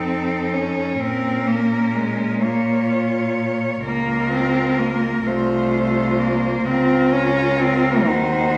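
In a slow, rubato 6/8 at 42 BPM, this elegiac, melancholic classical passage for four cellos, cut from a longer piece, settles into Bb minor from 3.8 s over harmonies moving from F7 to Bbm and closing on Cdim/Eb. A clear, distant cello sings the high melody over a second clear cello line, while an up-front clear cello carries the accompaniment and a rich, close cello anchors the bass. Each is a single bowed player with smooth, even tone and vibrato, set in the lingering reverb of a church or concert hall.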